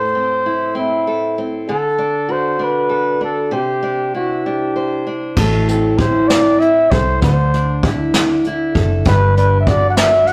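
A rough rehearsal-room recording with tube saturation and a moderate stone-room reverb carries this tender, romantic six-eight pop ballad at 65 BPM, cut from a longer piece. A close-miked, jazz-style flugelhorn sings the melody with scooped notes over a dark, picked steel-string acoustic guitar with audible finger squeak, and at 5.4 seconds a round, foam-muted vintage electric bass and a distant, roomy brushed jazz drum kit with a punchy kick join in as the chords move from Am through D and Cadd9 to Dsus2 and Gmaj7.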